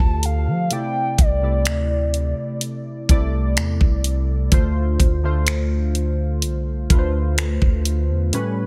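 A dry, dense and heavily limited mix sets a moody, late-night contemporary R&B groove at 63 BPM in D minor, cut from a longer piece and moving from Dm7 to C69 and back. Up front, a knocking trap kit with bright hi-hats, finger snaps and a softly clipped snare sits over a deep, sine-toned 808-style bass with long, decaying notes, while round, detuned analog keys with chorus and an evolving filter sweep carry the harmony through to 8.7 seconds. A hollow, woody clarinet-like synth lead with vibrato, chorus, phaser and digital delay sings the melody only until 2.6 seconds.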